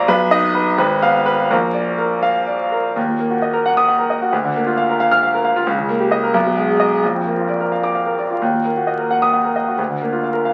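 Agitated and stormy, this brief excerpt from a virtuoso classical piano study unfolds in a 6/8 pulse, pulled and stretched by rubato. A solo grand piano carries everything across its 10.5 seconds, ranging from a deep Ab1 up to a bright F6. The instrument sounds clear, intimate and polished, placed up front with long sustain and audible action noise that brings the listener close to the keys. An opening passage gives way at 3.0 seconds to a new section, where the harmony keeps returning to E-flat minor and B-flat, shaded by chords such as Eb7/Db and Abm/Cb. Moderate studio reverb surrounds the piano, while the crackle of a very old 78 rpm record lends the whole a worn, historic patina.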